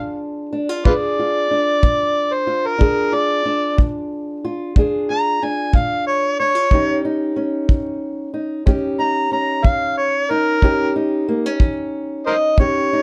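Acoustic country blues in a slow 12/8 at 61 BPM in Bb mixolydian, this gritty, soulful excerpt from a longer piece sets an amplified, overdriven harmonica up front with light vibrato, scooped notes, tongue slaps and a soft attack in a jazz-style solo over a woody, boxy fingerpicked old ladder-braced acoustic guitar on old strings moving from Bb7 to Eb7 at 6.7 seconds, while a tight kick drum from a small room enters at 0.9 seconds, all under light reverb in a dark production.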